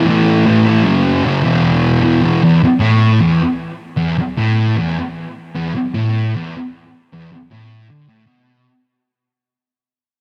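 A straight 4/4 pulse at 153 BPM drives this swaggering, rowdy rock fragment, where a lone thick fuzz guitar, dark, picked and double-tracked up front between E2 and A3, runs through distortion, a cassette tape effect and analog delay as it moves from A5 to F#5 to E5 before a fade-out from 2.4 to 8.7 seconds, all in a home cassette recording with light reverb.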